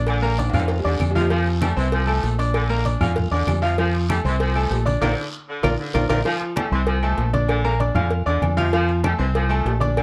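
Danceable and joyful, this short salsa cut moves at a brisk 194 BPM in F major, rocking between Bb and F as a brilliant, intimate baby grand piano with audible action noise sits up front beside a round, punchy fingered electric bass. A bright, vintage saxophone section carries a low second line, while congas, cowbell, claves, agogo bells and timbales fill the background with ringing, woody and dry colours, joined by a raspy guiro that drops out at 6.2 seconds. Drum fills arrive near the start and again at 5.6 seconds, inside a band accent that began at 5.0 seconds and sets up the repeat of the section, all wrapped in a dark production with light reverb.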